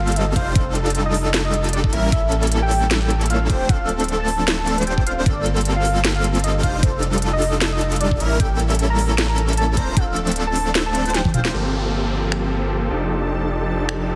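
Emotional and dreamy, this future bass excerpt rides a half-time, swung groove in which a knocking electronic kick and a trap kit of finger snaps, crisp hats, sharp snare and toms drive beneath huge, detuned supersaw chords and a thick, saturated sub bass, the chords and bass ducking with sidechain pumping through a drop that closes on a drum fill at 11.1 seconds. Over the top, a velvety, dark synth lead carries the melody with chorus, tremolo and digital delay, while a soft, airy lead spins background arpeggios through chorus and delay, the harmony moving through chords such as F13, A7b9, Dm7 and Gm11. At 11.5 seconds both leads drop out as an electronic downlifter falls away, and a shimmering, ethereal pad with built-in reverb drifts in behind, all under a heavily compressed, radio-like sheen with light reverb.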